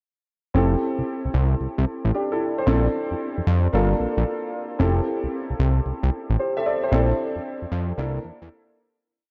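Soaked in a huge, dreamy reverb with its highs rolled off, this short, flirty and bouncy new jack swing piece at 113 BPM in F major swings its sixteenths as a fat, detuned sawtooth synth bass with a filter sweep drives a swung synth-funk line with muted ghost notes, while a clear concert grand piano with analog chorus holds rootless chords and adds short fills over Fmaj7, Bbmaj9#11, Gm9 and C13, before the verse fades out from 6.9 seconds.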